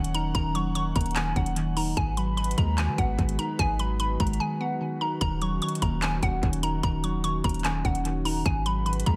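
A brooding, hard-hitting half-time trap excerpt opens with a hollow, bouncy square-wave pluck carrying the melody in chorus and tape echo over muted, felt-like synth keys, a breathy pad holding sustained chords, a deep, boomy 808-style bass and an up-front trap kit of hard-clipped kick, metallic hi-hats and handclaps, all set in an echo-heavy digital ambience with a brief break from 4.4 to 5.2 seconds.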